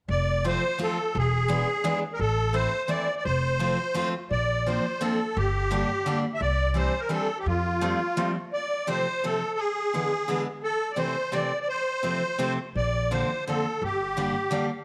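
A straight, whirling three-beat lilt carries this nostalgic musette waltz, cut from a longer piece, in which a reedy, shimmering accordion in musette tuning sings the melody close and up front, a jumbo steel-string acoustic guitar picks full-bodied, bright accompaniment, and a woody pizzicato upright bass holds the low end until 7.9 seconds before returning at 12.8 seconds, all set in a moderate echo-chamber reverb across two passes of the same section.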